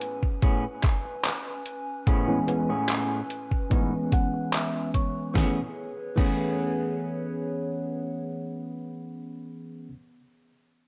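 A lo-fi cassette haze with light reverb hangs over this woozy, faded vaporwave fragment in A major, moving at a straight 73 BPM on an Amaj9 chord, cut from a longer piece. A dark, warbling tape-like pad of detuned square and triangle tones holds sustained chords beneath a clean, hollow-bodied electric guitar riff dressed in lush chorus, low-pass filtering and analog delay, with a filter sweep running until 5.4 seconds and a fill from 3.7 to 5.4 seconds. A thumpy, overdriven sampler kick sits up front beside a gritty, detuned 8-bit drum machine of crash, handclaps, hi-hat and gated snare until 6.4 seconds, while a worn, slightly out-of-tune tine electric piano enters at 2.3 seconds with chorus and delay.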